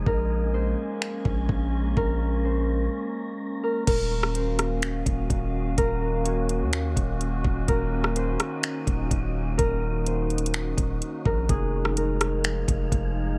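Spacious and hazy, this half-time atmospheric cloud-rap excerpt sets a ringing, thumb-plucked concert harp melody, softened by a low-pass filter and tape echo, over a warbling, detuned, nostalgic pad with chorus and sidechain pumping, a deep, decaying 808-style sine bass, a faint airy, breathy wind-like noise layer and an up-front electronic R&B kit of knocking kick, metallic hats, finger snaps, rim clicks and crash, with a brief break at 2.9 seconds before the harmony shifts at 3.9 seconds.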